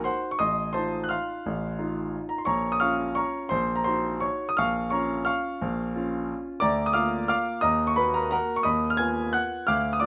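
A warm, polished grand piano plays alone and up front in this wistful, elegant classical waltz in B-flat minor, moving in 3/4 at about 174 BPM with uneven, rubato beats. Across its range, from A1 to Ab6, the piano moves through harmonies such as F7/A, Bbm, Ebm/Bb and Bb/D before reaching Fm7b5/Eb near 8.7 seconds. Light reverb surrounds the present sound in this short passage cut from a longer piece.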